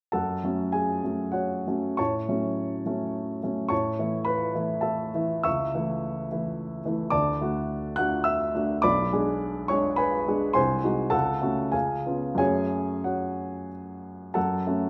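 A polished, up-front baby grand piano carries this passionate, stormy romantic character piece alone, spanning B1 to F#6 in F# minor with free rubato in 3/4 at roughly 88-113 BPM. The harmony moves from F# minor through A major and D, then tightens through a diminished chord and C#7 before settling back on F# minor at 12.4 seconds. Close, detailed microphones keep the piano present within a moderate recital-hall reverb, and the passage is cut from a longer piece.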